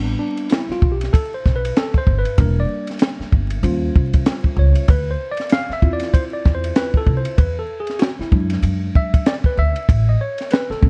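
A worn, slightly out-of-tune tine electric piano and a woody pizzicato upright bass open this smoky, nocturnal jazz-hop excerpt, with the piano taking a mellow solo over rich minor-leaning seventh and ninth chords. At 0.4 seconds a compact cocktail drum kit joins up front, its punchy kick, high-tuned snare, hi-hat and ride rolled off on top and roughened by vintage 12-bit sampler grit, all riding a lazy swung sixteenth-note feel. The dark production stays dry and close, with vinyl crackle hanging over the whole mix.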